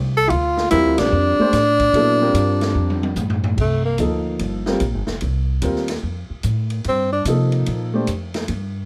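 Swinging in 4/4 at 147 BPM, this spiritual, hypnotic modal jazz fragment pairs a thumpy, gut-strung pizzicato upright bass up front with a distant, roomy big-band kit of punchy kick and rolled-off top and a natural, long-sustaining upright piano, as a breathy tenor saxophone with light vibrato and scooped notes carries the melody over Gm9, the band hitting an accent at 0.9 s, before a drum fill from 2.8 s leads into a C dorian saxophone solo over C7sus4 at 3.6 s, set in a small room's reverb.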